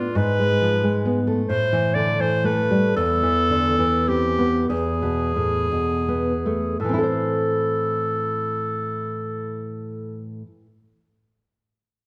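A rubato 6/8 pulse of 26-46 BPM in dotted quarters, slowing through the first 6.8 seconds, carries this elegiac, melancholic romantic duo in A minor, where a soft-attacked, warm clarinet sings the melody up front over a dark, thumb-plucked nylon-string guitar accompaniment, both placed in a moderate recital hall reverb in this short cut from a longer piece that moves through G#m6, Am/E and E before arriving on Am at 6.8 seconds.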